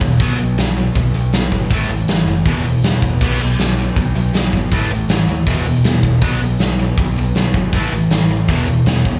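A rowdy, energetic punk rock passage at 159 BPM in 4/4 opens with the whole band at once: a sludgy, double-tracked overdriven guitar riff cycling through B5, A5 and E5 power chords up front, over a growly, bright picked electric bass. A big acoustic rock kit with a punchy kick, medium-tuned snare, hi-hat and crash cymbals sits forward in the mix with a rolled-off top and a large-room character. Light reverb gives it the feel of a band playing live in one room, cut from a longer piece and tuned slightly below standard pitch.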